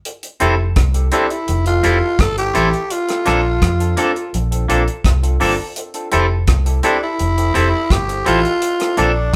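Lovers rock reggae in a tender, smooth mood, with a dry, tight-kicked drum kit playing hi-hat and rim clicks, a dark, round, foam-muted bass, twangy guitar stabs and a bright, barky electric piano through tape echo framing a raspy, growling tenor saxophone melody that enters at 1.1 s, all captured live in one room over Fmaj7 and Bbmaj7 chords.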